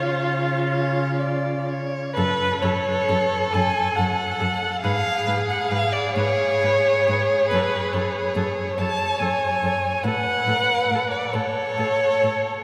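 Bathed in a wet cathedral reverb, this melancholic, elegiac slow romantic movement for string quartet, cut from a longer piece and flowing in a rubato 6/8, sets a first violin up front singing the melody with smooth vibrato and portamento, a second violin carrying an expressive second line beneath it, a clear, even viola supplying accompaniment in the background, and an intimate, close cello bass with soft attacks and an airy bow.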